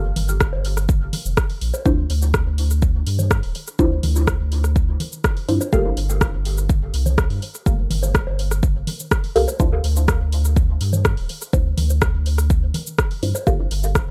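Dub techno at 124 BPM in 4/4 with a straight feel, this short cut from a longer piece sits in D minor and carries a nocturnal, meditative mood. Up front, a muted, detuned sawtooth-and-square chord stab with a sub octave and a filter pluck moves through Gm7, Dm9 and Gm9, its fast attack and short decay shaped by phaser, sidechain pumping and dub echo. Beneath it, a round sine sub bass with tube saturation holds sustained low notes from D1 to G2 and pumps with the sidechain. A deep, layered electronic kick enters at 0.4 seconds and anchors the groove, while a deep house kit of dark hi-hats, rim click and shaker adds produced detail in a studio ambience. Analog congas and woodblock, re-recorded in a large room, sit low in the mix with their own echo and pumping, and the whole recording has a dry, gritty hardware character with little reverb.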